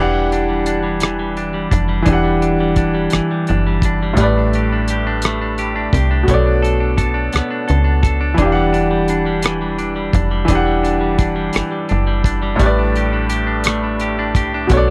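A dry, close recording with a 1970s studio character carries this sultry, late-night R&B excerpt, a slow six-eight groove at 57 BPM in E dorian, moving through Em9, A9sus4 and Bm9. A brilliant grand piano with long sustain provides the accompaniment, while a clean, compressed, twangy electric guitar plays a second line, and a slap-like FM bass with a snappy, metallic attack holds the low end. At 0.3 seconds a cloth-damped, thuddy drum kit comes in with hi-hat, tight kick and rim click, its top rolled off and set up front.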